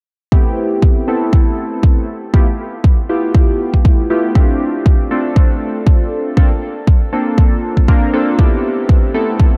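A deep, layered electronic kick sits up front from 0.3 s, anchoring this deep house track at 119 BPM in 4/4 with a 55% swing on the sixteenths. Round, detuned sawtooth analog key stabs with fast attack and decaying tails play over it in A minor, colored by chorus, phaser, sidechain pumping, a low-pass filter sweep and a diffuse ambient delay. They move through Am9, G13, F69 and Bbmaj9 before returning to Am9 at 8.4 s. A huge ambient reverb soaks the mix in a dreamy, deep haze, in this short section cut from a longer piece.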